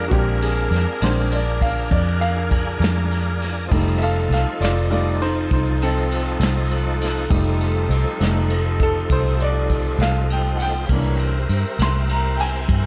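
Opening on a mellow saxophone section and a tonewheel organ holding sustained chords through a slow rotary speaker with chorus vibrato, this gritty, swaggering slow blues excerpt in 12/8 at 67 BPM in F mixolydian moves from Bb7 to F7 and on to C7 at 10.9 s, as a clear, woody upright piano solos over a round, foam-muted fingered electric bass sitting up front and a vintage brush drum kit with dark cymbals and a tight kick, all set in light studio reverb.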